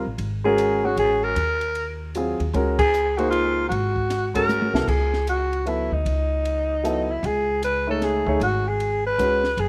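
A growling alto saxophone carries the melody from 0.4 seconds, raspy and gritty with vibrato and a slapback echo, in this spiritual, searching modal jazz excerpt at 153 BPM in a swinging 3/4, settling into C# minor at 4.9 seconds. A polished, present grand piano, also touched with slapback echo, comps over suspended ninth chords, while a woody pizzicato upright bass on steel strings sits up front. A compact cocktail kit with a dark, smooth tone, high-tuned snare and punchy kick enters at 0.2 seconds, hits a band accent at 2.7 seconds and plays a fill from 4.5 to 4.9 seconds, all in a dry outdoor sound with little reverb.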